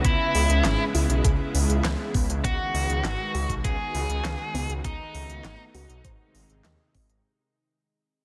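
A biting, overdriven electric lead guitar carries the melody up front with delay, dropping out at 5.6 seconds, in this nocturnal, moody synthwave excerpt at 100 BPM in straight 4/4, moving through C#m7, G#m7 and B7/C# before landing on G#. Underneath, a thick detuned saw bass with chorus sits up front, a lush, bright unison pad with slow attack pumps against the sidechain, and a soft, warbling pluck plays chorused, delayed arpeggios in the background. A knocking, tape-warm electronic kick and a pop kit with a fat snare, crisp hats and handclaps drive the dense, heavily limited mix with light reverb, which fades out from 0.8 seconds onward.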